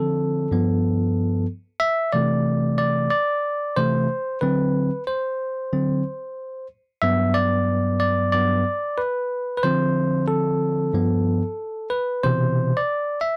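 A bell-like tine electric piano plays alone from 0.0 to 13.4 seconds in this smoky, nocturnal hip hop fragment at 92 BPM in 4/4 with a swung sixteenth feel, its bright, clean tone sitting up front and direct in a dry, close 1970s-style studio sound with little reverb as it moves through Dm7, G9, C69, D6, Gmaj7 and back to Dm7 and G9 before settling on Cmaj7.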